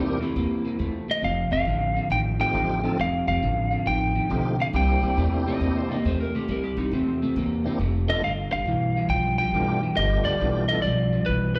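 A swung 4/4 shuffle at 137 BPM drives this rollicking, soulful electric blues excerpt over C9, F9 and G9 chords, with a thumpy, woody upright bass and a twangy, barely broken-up guitar riff with lush chorus and slapback echo, while a full tonewheel organ with slow rotary speaker, overdrive and chorus vibrato fills in until 10.8 seconds. A compressed, lightly driven lead guitar carries the melody up front from 1.1 seconds, and a fingerpicked slide guitar adds a second line in brief spots, returning at 5.5 seconds. It sounds like a live club gig heard through the venue's PA, with light reverb and a digital ambience.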